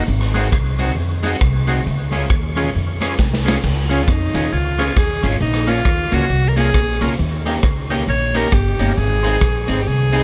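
A swung ska pulse at 135 BPM in 4/4 drives this upbeat, joyful piece in Db major, led by a raw garage drum kit up front whose punchy kick, medium-tuned snare, rim click, hi-hat and crash sound saturated and gritty in a bright, pumping stone room. A woody, thumpy pizzicato upright bass on steel strings anchors the low end, while an electric guitar through a small old amp adds twangy, slightly broken-up picked accompaniment. Farther back, an overdriven tonewheel organ punctuates with thick, percussive stabs, its key click and second-harmonic percussion colored by chorus vibrato, a slow rotary speaker and analog delay. After a drum fill at 3.2 seconds the music shifts into a new section at 3.6 seconds, and an edgy alto saxophone enters at 3.9 seconds for a forceful, close-miked pop-style solo with vibrato that stays out front to the end. The harmony moves from Ab7 to Db, then through Bbm and Eb7 to Ab, under light reverb.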